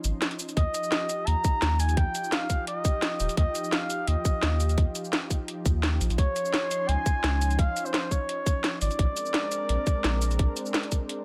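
Warm and lush, this short excerpt from a longer liquid drum and bass piece moves at 171 BPM in Eb major, with a straight 4/4 feel. A thick, warbling pad of detuned sawtooth voices holds sustained chords throughout, its slow attack and long release softened by chorus and pulsed by sidechain pumping, while a deep, round sine sub bass sits up front. The drum kit offers a cracking snare, metallic hats and shaker, joined at 0.6 s by a tight, layered electronic kick, both re-recorded in a small room for an up-front, present sound. Also entering at 0.6 s, a mellow flugelhorn carries the jazz-style solo melody with light vibrato, trailed by dub echo. The harmony shifts from Dbmaj9 to Ebadd9, returns to Dbmaj9 at 6.2 s and lands on Bb9, all wrapped in light reverb and digital ambience.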